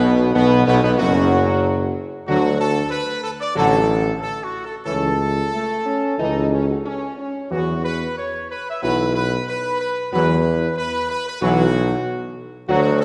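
Classical brass in a triumphant, solemn mood, with a dark, tight trumpet section carrying the melody up front over sustained chords from a mellow, close-miked trombone section in the background and a French horn section with light vibrato, all anchored by a warm tuba bass, heard through the long, wet reverb of a church or concert hall in a 13-second cut from a longer piece.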